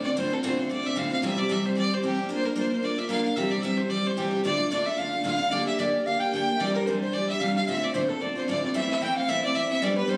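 A bright, biting fiddle with light vibrato carries the melody up front in this spirited, driving Celtic reel in D minor, moving at 224 BPM with a gentle swing on the eighth notes. A picked steel-string acoustic guitar, also up front and bright, keeps the accompaniment going through chords such as Dm7, C and Bb, while a mellow, airy wooden flute with a soft attack and straight tone sounds briefly at the very start and then returns as a second line at 4.5 seconds. The sound is that of a phone recording in a small room, with moderate reverb and compression, and the excerpt is cut from a longer piece, shifting to a new section on Am at 8.7 seconds.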